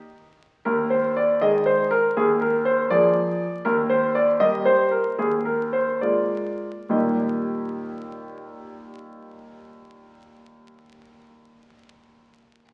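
In 6/8 with a rubato feel, moving at roughly 65-82 BPM in dotted quarters, this playful, graceful classical-period sonatina in Eb major begins at 0.7 seconds and slows down between 2.9 and 6.9 seconds before a second section takes over. A solo grand piano, clear and smooth with a vintage character and short sustain, sits up front, ranging from Eb2 to Eb5 over harmonies that settle on Eb. The sound carries the crackle of a very old 78 rpm record and a wet recital hall reverb, and the passage is cut from a longer piece.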